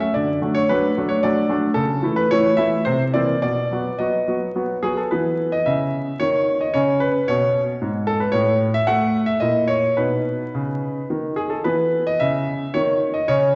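Heard from further back in a recital hall with a wet reverb, the recording carries a vinyl crackle and a dulled top end that softens the sound. This is a playful, elegant classical-period piano sonatina in E major at 110 BPM in 3/4, played with rubato and tuned slightly high to A4 = 441 Hz. The solo concert grand still sounds brilliant and present, close in the ear, with a deep bass and a range from G#2 to F#5. An opening passage moves through D, A over C#, C7 and B before a second passage begins at 5.1 s, drifting through C#5, A6 and an A# diminished chord before settling back on E5. The 13.6-second excerpt is cut from a longer piece.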